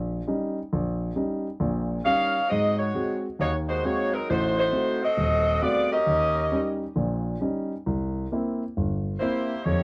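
A swung eighth-note feel in four drives this short fragment of brassy, energetic jazz, cut from a longer piece. A warm grand piano opens alone at 0.0 seconds, accompanying with short, up-front notes that reach deep into the bass register. At 2.0 seconds a saxophone section enters with the melody, its playing clear, tight and marked by vibrato, sitting a little louder than the piano. The harmony moves through Eb7, Ab7, Adim7, back to Eb7 and on to C7, all within a single section that runs to 9.8 seconds. The sound is dry and close, with little reverb, in the manner of a 1970s studio recording.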